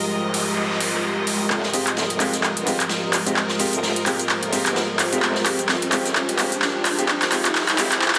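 A swung 129 BPM bass house groove in F minor, swaggering and gritty, opens on an Fmadd9 chord with a deep, moody pad, clear piano stabs with delay, a background noise sweep and riser, lush bowed strings and a very quiet, airy jazz kit, before the up-front, overdriven dance kit with metallic hats and handclaps arrives at 0.3 seconds and the aggressive wobble bass joins at 1.5 seconds for a build-up and drum fill in this dense, heavily limited excerpt from a longer piece.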